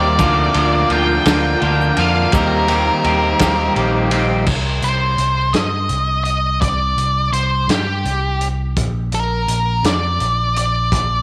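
Set in a small room with light reverb, this moody, restless indie rock excerpt in 6/8 at 56 BPM features an up-front octave-fuzz lead guitar with a dark tone and slapback echo carrying the melody over a growly, punchy picked bass and a loose, gritty drum kit with a fat snare and dark cymbals. A clean twangy guitar riff, a background chorus-tinged overdriven semi-hollow guitar riff, mellow flute-like tonewheel organ chords with key click and slow rotary speaker, and a grainy egg shaker fill out the opening. The two riff guitars and the organ fall away at 4.5 s as the harmony moves from Bb/D and Eb6 to Cm and Bb.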